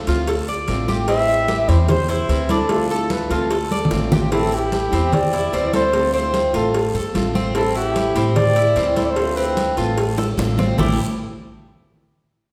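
A wet recital-hall reverb surrounds this danceable Cuban son and guajira passage, lending it the air of a church or concert hall. The lead is a trumpet with a bucket mute, dark and veiled with breathy vibrato, carrying a jazz-style solo melody that sits present at the front and stops at 10.2 s. Beneath it, a small, fingerpicked nylon-string guitar supplies accompaniment while a bright, metallic Cuban tres picks arpeggios on its doubled strings. A woody, thumpy upright bass with gut strings plays pizzicato up front. In the background sit thick-skinned vintage congas and round, low-tuned cowbell and bongos, while a raspy, saturated guiro adds its own texture, with drum fills arriving at 3.7 s and 10.2 s. The harmony alternates between Dm7 and Am7 before settling on an A7 chord.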